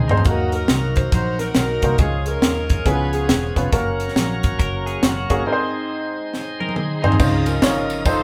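Uplifting and jubilant, this uptempo gospel excerpt swings at 138 BPM in Db major, with a crisp, high-tuned fusion drum kit and a woody upright piano up front over a foam-muted fingered electric bass and a shouting tonewheel organ through a fast rotary speaker, while a soft-attack saxophone section and a very quiet concert grand piano carry the melody, a twangy, phased clean electric guitar returns at 4.6 seconds with a background second line, and tambourine and handclaps join at 7.2 seconds as the harmony lands on Dbmaj9.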